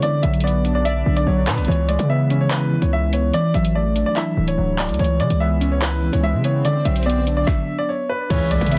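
This is a dark, ominous drill-flavoured hip hop excerpt at 145 BPM in 4/4 with a half-time feel, cycling through Bm, C#m7, Dadd9 and C#m7. A clear upright piano carries the melody, intimate and polished with audible action noise and a touch of delay. Warbling lo-fi synth keys with chorus fill in the accompaniment, their detuned, nostalgic tone shifting under a filter sweep. The electronic drill kit pairs a hard-clipped kick and woody snare with hi-hats, handclaps, rim clicks and crash, while a punchy, heavy 808-style bass sits up front. An electronic swell rises in the background from 6.1 s, a stop lands at 7.5 s, and an impact at 8.3 s ushers in sustained chords from a reedy accordion. Light reverb and vinyl crackle colour a dense, heavily limited modern master.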